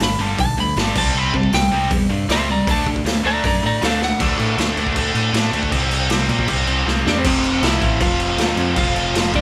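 Rebellious and rowdy, this short cut from a longer punk rock piece charges ahead at 157 BPM in a straight 4/4, with the band captured live in one room under light reverb. A raw garage drum kit sits up front, its punchy kick, medium-tuned snare, hi-hat and crash cymbal sounding gritty and saturated with a rolled-off top, and it drops in fills at 4.0 and from 6.9 to 7.2 seconds. Underneath, a tight, double-tracked distorted guitar plays the riff throughout, while a growly, direct electric bass adds a bright, picked low end. A slightly broken-up, compressed lead guitar opens with a solo over the first 4.2 seconds, steps out, and returns at 7.1 seconds to carry the melody to the close. The chords move through G, C5, D5 and C7 before landing on F5 at 7.2 seconds.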